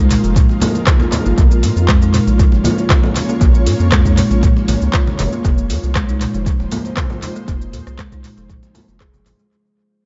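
A deep, up-front electronic kick anchors this spiritual, earthy afro house excerpt at 118 BPM alongside a round sine sub bass with tube saturation and an afro-pop kit of handclaps, metallic hi-hats, rim click, shaker and toms, while bright congas echo from a distant large room. Over Fm7 and Bbm chords, a woody, hollow-sounding kalimba plays soft, short arpeggios through tape echo, and an ethereal, airy pad of detuned sawtooth and triangle layers sustains chords with chorus, reverb, tremolo and sidechain pumping. The echo-heavy mix has a dark, rolled-off top and begins fading out at 4.1 seconds.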